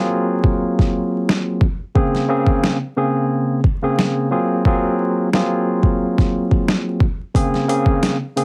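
Reflective yet tough, this boom-bap hip-hop excerpt rides a lightly swung groove, with a barky tine electric piano up front playing clean, direct accompaniment through cassette tape coloring and filtering, moving between Ab13 and Bbm9 chords. A sampler-style drum kit enters at 0.4 seconds, pitched down and gritty with a thumpy kick, medium-tuned snare and hi-hat, overdriven and compressed. The whole mix sits in a small room under a squashed radio sound and vinyl crackle, and is cut from a longer piece.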